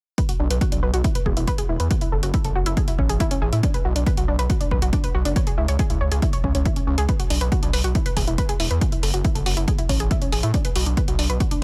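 The gritty, wave-folded synth bass sits up front, its nasal, saturated tone pumping as it moves between E1 and A2 from 0.4 seconds. This is soaring, driving uplifting trance at 139 BPM in 4/4 with a straight feel, in B dorian, cut from a longer piece. A heavy, overdriven electronic kick drum pushes hard in the mix, while a tape-tinged electronic hi-hat, also pumping, ticks along beneath it. Above them, a round, warbling analog pluck plays arpeggios between C#4 and C#5, treated with chorus, delay and sidechain pumping, its bright vintage sawtooth tone shaped by a filter sweep. The chords cycle through Bm, E, F#m7 and Amaj7, with a brief turn to C#m at 5.4 seconds before the progression returns, all in a dry, close mix with little reverb.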